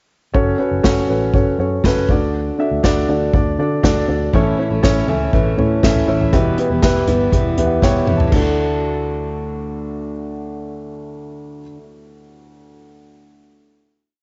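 A stomping four-on-the-floor pop beat at 120 BPM in 4/4 drives this short, uplifting piece of piano-driven pop in D major, played on an acoustic kit with bundle sticks, a punchy kick and a medium-tuned snare in an airy small room. A dark, foam-muted electric bass rolls underneath in round, driving eighth notes, while an up-front baby grand piano plays eighth-note chords in close voicing, its mellow tone carrying audible action noise and a cassette-tape color. At 4.3 seconds a fingerpicked steel-string jumbo guitar joins with a riff on open chord shapes, full-bodied and dark with fresh strings, also tinted by cassette tape. The verse moves through F#m, D, A and Em, and the piano adds a short fill from 7.3 seconds, joined briefly by a drum fill, before everything lands on a final D chord at 8.3 seconds that the piano holds longest. Light reverb and a homespun cassette sound, rolled off in the highs, give the whole piece an intimate, lo-fi glow.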